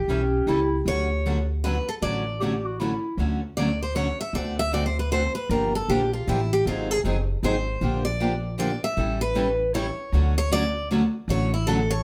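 Heard from further back in a studio room with wet reverb, this charming, playful snippet of jazz manouche in a swinging 3/4 sets a bright, up-front picked steel-string guitar melody beside a dark, subtoned vintage clarinet second line with light vibrato and scooped notes until 3.2 seconds, when the lead guitar moves into a solo over a boxy parlour accompaniment guitar with finger squeak, a second fresh-stringed parlour guitar further down in level, and a woody, thumpy pizzicato upright bass on gut strings, passing through chords such as Gm7, G#7 and Bb6.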